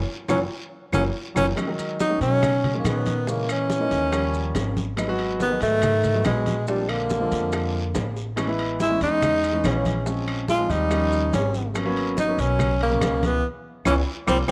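A small room ambience with light reverb frames this lively, danceable Afro-Cuban jazz clip, cut from a longer piece and moving at 141 BPM in a straight 4/4, where a close-miked tenor saxophone with vibrato, soft attack and scooped notes carries the melody up front over a woody, pizzicato upright bass that sounds alone for its first 0.3 seconds. Behind it, a buzzy, breathy trombone in a metal mute plays a second line while a dark, mellow grand piano comps and adds a fill just before a drum fill leads into the second section at 1.6 seconds. A bed of percussion sits in the background, with bright damped congas, tight high-tuned bongos, ringing metal-shell timbales, woody claves, a raspy guiro and grainy maracas, and the full band hits accents at the start and again from 13.4 seconds.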